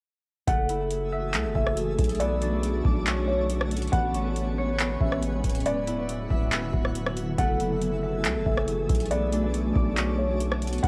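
Hazy and melancholic, this atmospheric cloud-rap excerpt in F# minor moves at 139 BPM in a half-time feel, with a booming analog drum machine of deep kick, metallic hats, handclaps and rim click up front beside a long sustained 808-style bass, while a soft, felt-muted upright piano melody with tape echo and fingerpicked concert harp arpeggios ring over a blurred, cloudy granular pad that pumps to the sidechain and a faint twinkling granular shimmer entering at 0.9 seconds, all through chords from F#m9 to Bm9, Amaj9 and D69, captured as a home recording on cassette.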